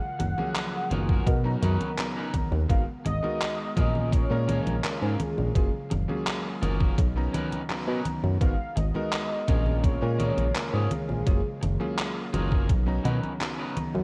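A faded cassette haze hangs over this woozy vaporwave excerpt, giving the whole recording a worn, nostalgic sheen. A velvety synth lead carries the melody with chorus, vibrato and tape echo until about 11.6 seconds, floating over a very quiet, warbling pad of detuned sustained chords. Underneath, a glossy, nasal synth bass sits up front with tube saturation, while a detuned 8-bit drum machine plays congas, handclaps and hi-hat through studio and gated reverb from 0.2 seconds, joined by a thumpy electronic kick at 1.1 seconds. A slightly broken-up, twangy electric guitar plays a picked riff, and an electric grand piano with a clangy low end adds accompaniment, both coated in lush chorus, 12-bit sampler grit and tape echo. The harmony drifts through lush extended chords, cycling from F#maj9 to Bmaj9, G#m9 and A#m7.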